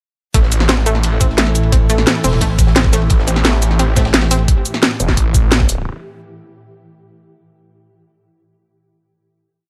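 A digital ambience surrounds this dark, mechanical technical drum and bass drop at 174 BPM. It starts at 0.3 s on an A5 chord, driven by a knocking, broken-beat electronic kick and an up-front, tight drum kit with a cracking snare, bright hats and cabasa, over a very quiet, gritty looped breakbeat with dark cymbals and a high-tuned snare. A snarling, distorted sawtooth bass growls in chopped phrases while a heavy, chorused pluck wobble bass from 1.2 s answers it with modulated phrases. A swarming, wave-folded granular drone and a lush, warbling unison pluck arpeggio with tape echo and a 3-step loop drifting against the bar sit in the background, and the saw bass, drone and pluck all carry sidechain pumping.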